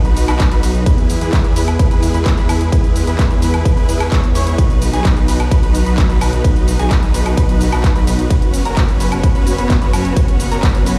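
A straight 4/4 pulse at 129 BPM drives this anthemic, triumphant festival progressive house excerpt in B major, where a punchy, up-front electronic kick joins at 0.4 seconds beneath a layered dance kit of handclaps, hi-hat, ride cymbal, shaker and woodblock, a thick, saturated detuned saw bass with chorus, huge supersaw chords carrying the riff through tape echo, a brilliant grand piano arpeggiating in the background, and a lush, slow-attack unison pad with chorus and phaser, all the melodic parts pumping to the sidechain as the chords move from B to E, back to B and up to F#sus4, heard through a bare stone room on a big sound system.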